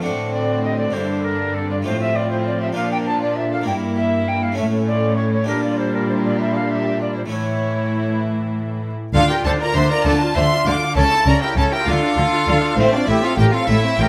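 Classical, baroque-style concerto movement in 6/8, driving and dramatic, cut from a longer piece. A mellow, pure alto recorder with vibrato carries the melody alongside an expressive violin section, while a rich second violin line, a focused, lush viola section and an airy, brilliant harpsichord in the background fill out the texture over an up-front cello bass. At 9.1 s a dark, smooth double bass section joins as the music moves into a new section, set in a moderate scoring-stage reverb.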